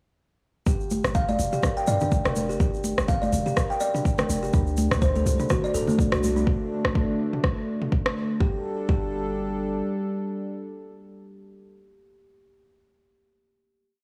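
A four-on-the-floor electronic kick drives this earthy afro house piece at 124 BPM with a light 16th-note swing, joined by a deep house kit of programmed hats, backbeat, rim clicks and low toms, hard-hand interlocking congas, and a grainy hand-played tube shaker. A woody, hollow kalimba repeats a 16-step arpeggio sequence up front, ringing through tape echo and sidechain pumping over a boomy, sine-based 808-style bass riff that also pumps, as the harmony moves from G7(no3) to D7(no3). At 4.5 seconds a smooth sawtooth pad with chorus enters, and the piece ends on a sustained G5 chord from 8.4 seconds, all in a dry, gritty recording with small room ambience and light reverb.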